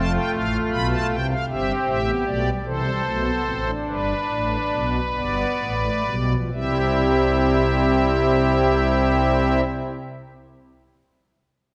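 Bathed in a wet concert-hall reverb, this stately, joyful baroque-style four-part fugue in C major, cut from a longer piece, sets a solo pipe organ up front on soft, shimmering strings-celeste stops with a romantic voicing, moving in a straight 12/8 at 42-54 BPM in dotted quarters and slowing through the opening 6.5 seconds as the harmony passes from a rootless Dm/F through C/G and G to C, before the organ falls silent at 9.6 seconds.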